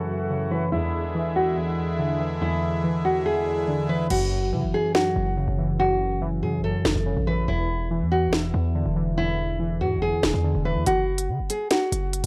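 A tense, ominous excerpt of half-time drill hip hop at 142 BPM opens with a fingerpicked nylon-string guitar melody over detuned, warbling lo-fi synth keys and reedy accordion chords on F#m7 and E7. At 4.1 seconds the accordion drops out as a heavy, punchy 808-style bass and an electronic drill kit with a sharp snare and crash cymbal join in, the kit's hi-hats muted until 10.9 seconds when the keys drop out, all in a dry, gritty recording.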